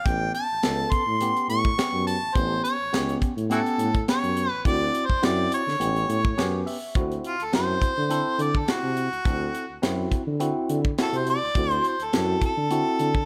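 Laid-back and rollicking, this short cut from a longer soul blues piece rides a straight-eighth groove with a light swing on the sixteenths. A clear, overdriven harmonica carries the melody up front, its light vibrato, tongue slaps and scooped notes giving it a jazzy edge that turns into a full solo from 7.0 seconds to the end. Beneath it, a tine electric piano played through a combo amp supplies clean accompaniment colored by a phaser, stepping forward with a fill from 6.1 seconds just before the solo. A warm tuba holds down the bass with light vibrato and a smooth top, while a tight funk drum kit of hi-hat, kick and high-tuned snare sits up front with a natural small-room sound. The harmony moves between A9 and D9 chords, all under a light reverb.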